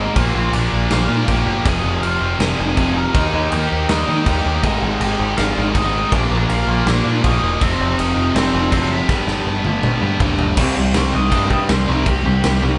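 Captured as a band playing live in one moderately ambient room with a capped top end, this raw, angry punk rock excerpt in C minor charges at 162 BPM in a half-time feel, with a growling overdriven bass and a roomy acoustic drum kit with a punchy kick both up front, three distorted guitars grinding out riffs (one tight, one double-tracked and high-gain, both in the background, plus a very quiet compressed one), and a bright overdriven garage guitar carrying the melody, until a drum fill at 9.1 seconds leads into a guitar solo at 10.6 seconds as the harmony arrives on C minor.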